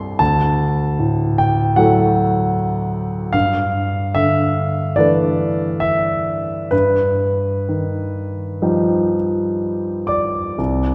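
A concert grand piano carries this short solo passage from the first moment to about 10.9 seconds, ranging from deep bass up into its high register. Its tone is intimate and polished, with long sustain and the mechanical noise of its action audible close at hand. The mood is dreamy and hazy, an impressionist classical piece in 4/4 with a flexible, rubato feel, cut from a longer work. The harmony drifts from Dadd9 to G13 at 3.3 seconds and then to Gaug7 at 6.7 seconds. A wet concert hall reverb surrounds the instrument, as if heard from further back in the room, and its tail adds to the blurred, floating atmosphere.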